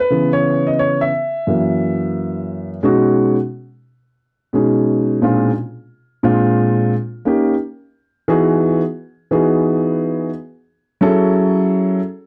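A dark, woody upright piano sits up front and plays alone through this smooth hip hop excerpt in B major at 88 BPM with a 16th-note swing, its mellow long-sustained voicings moving from C#m7 and F#7 to a B6 at 2.8 seconds and on through A#7, D#7 and Emaj7 in a small, moderately reverberant room with a warm production.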